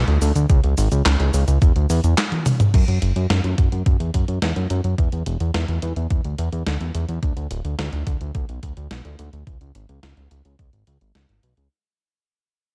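A fat, detuned sawtooth bass opens this uplifting, romantic synthwave passage cut from a longer piece, its thick, sustained notes pumping against the sidechain and shaped by a filter sweep. A clean 12-bit drum machine of medium-tuned snare, handclaps, hi-hat, shaker, toms and crash enters at 0.1 seconds, and a thumpy, sampler-style electronic kick joins at 0.5 seconds, both tape-warm, up front and re-recorded in a large room. A drum fill at 2.3 seconds leads into a new section where the music fades out from 2.7 seconds, all within a dark, warm production with little reverb.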